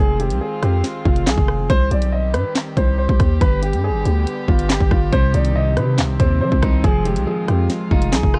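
Drill drums with a hard-clipped kick, a sharp snare, bright hats, handclaps and rim clicks sit up front beside a growling, buzzy 808 bass in this ominous, menacing half-time drill hip hop excerpt, while a mellow, long-sustaining baby grand piano carries a low-pass-filtered melody over bowed chamber strings with a nasal, reedy gut-string tone, and a slightly broken-up electric guitar with spring reverb joins at 5.1 s, all set in a dark digital ambience with a faint mains hum.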